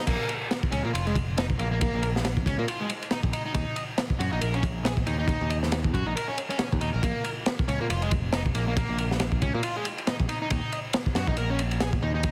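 A distorted, double-tracked electric guitar riff with dub echo opens this raw, swaggering breakbeat excerpt at 138 BPM in Bb minor, joined at 0.1 seconds by a bright, punchy picked bass and a crunchy, gritty drum kit of punchy kick, medium-tuned snare, and dark crash and ride cymbals, all swung on the sixteenths over Bbm and Eb5 chords inside a heavily compressed, radio-like sound with light studio reverb.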